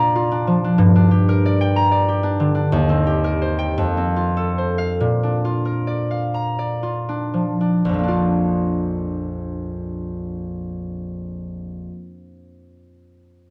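In a 6/8 with free rubato, this dreamy, serene classical excerpt features a solo concert harp, fingerpicked and ringing up front across a span from Bb1 to Bb5, playing alone from 0.0 to 12.1 seconds. The harmony moves from Bb through Gm, Cm7/Eb and F before settling back on Bb, with the pace slowing between 1.8 and 7.8 seconds as the opening section gives way to a second at 7.8 seconds. Light reverb and a dark, warm production surround the harp's acoustic tone.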